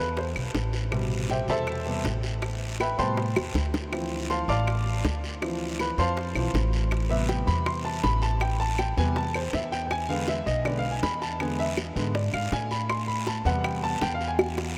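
A straight 4/4 groove at 160 BPM drives this sultry Afro-Cuban jazz passage in A minor: round, low-tuned bongos played with soft hands sit in the background beside dry, woody claves, while a raspy guiro scrapes close by, and drum fills arrive at 3.4 and 14.4 seconds. Up front, a pizzicato upright bass with steel strings anchors the low end as a warm, intimate concert grand piano, with deep bass and audible action noise, takes a solo through an Am9, Dm9 and E7 progression. The whole fragment, cut from a longer piece, sits in a vast, echoing space bathed in a huge ambient reverb.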